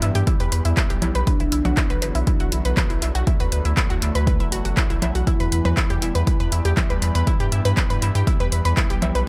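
Melodic techno at 120 BPM in E minor, hypnotic and driving in this short cut from a longer piece, built on an up-front heavy electronic kick entering at 0.3 s, a techno kit of handclaps, hi-hat and percussion blips with sidechain pumping and analog delay, a round, deep analog bass, punchy detuned unison pluck arpeggios with 12-bit sampler grit and analog delay, a morphing, warbling wavetable pad holding sustained chords in the background, a very quiet wave-folded drone with moving overtones, and a soft octave-layered lead with chorus, tremolo and tape echo that surfaces briefly at 1.3 s and 5.3 s, all in an echo-heavy mix with light reverb.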